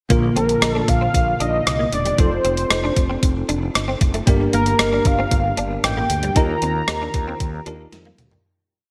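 Nostalgic and uplifting, this short 1980s-style pop verse sets a thick, detuned sawtooth unison lead carrying song-like motifs over held, close-voiced bell-like tine electric piano chords, a picked, muted clean electric guitar line with chorus and delay, a round fretless bass driving eighth notes with chromatic approach notes, and an up-front drum machine with a thumpy kick and a big gated-reverb snare backbeat, set in a lush hall with bright digital production before fading out from 6.4 seconds under a closing drum fill.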